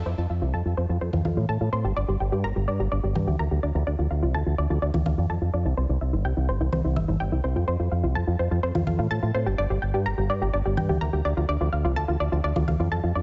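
A direct, up-front fingered electric bass with an envelope filter and tube saturation drives this melodramatic, danceable italo disco excerpt in G dorian at 126 BPM, moving through F, Gm, Dm and C. A round analog pluck built from sawtooth and square waves with a sub octave plays chorused, delayed arpeggios with a fast attack and short decay. Electronic, sampler-style congas enter at 1.1 s under low-pass filtering and a filter sweep, all set in light reverb with a dark, rolled-off top end.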